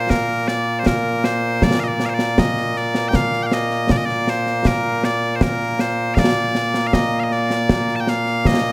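Bright, piercing bagpipes stand out most, playing the melody as a continuous solo line up front from the first moment and ranging from Bb2 to A5. This short excerpt, cut from a longer piece, is Scottish traditional pipe music in Bb major, moving at 79 BPM in a straight 3/4 with a ceremonial, stirring mood. Concert snare drum and concert bass drum join at 0.1 seconds, sounding acoustic, close and dry, with dark cymbals. Both parts carry on together until the end at 8.7 seconds. Close, detailed microphones and light reverb keep the sound clear and present.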